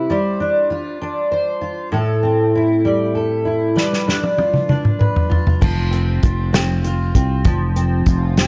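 A swaying six-eight lilt carries this romantic pop ballad fragment, opening with a double-tracked, fingerpicked steel-string jumbo acoustic guitar whose fresh strings sound full-bodied as it moves through G7sus4, Am7 and G7. At 3.8 seconds an airy, polished acoustic drum kit played with bundle sticks enters on a fill across crash, hi-hat, tight kick, medium-tuned snare and toms, and at 5.6 seconds a growly, direct fretless electric bass settles onto an F5 chord. Light reverb and small-room ambience surround the up-front parts, all heard through a worn cassette tape with warbly pitch drift.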